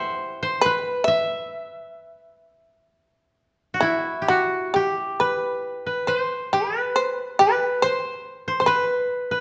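A buzzing, percussive shamisen carries the melody up front while a woody, dry koto plays a second line alongside it, both sounding throughout this austere, solitary piece of Japanese chamber music in free-flowing rubato, set in a moderate recital hall reverb and cut from a longer work.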